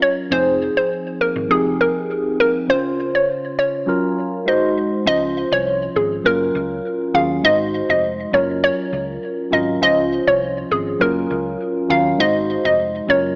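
A straight 4/4 groove at 101 BPM sets up this breezy, romantic afrobeats passage in Db major, cut from a longer piece, where a mellow tine electric piano with phaser lays down chords moving from Fm7 through Dbmaj7, Gbmaj7 and Ab7 while a dark, round, punchy hollow-body bass enters at 0.3 seconds to anchor the low end. On top, a bouncy square-wave pluck carries the melody with a detuned, fast-attack, decaying tone, thickened by chorus and trailed by tape echo. The whole mix sits in light digital ambience with an AM-radio character, shifting into a second section at 5.1 seconds that cycles through Dbmaj7, Gbmaj7 and Ab7.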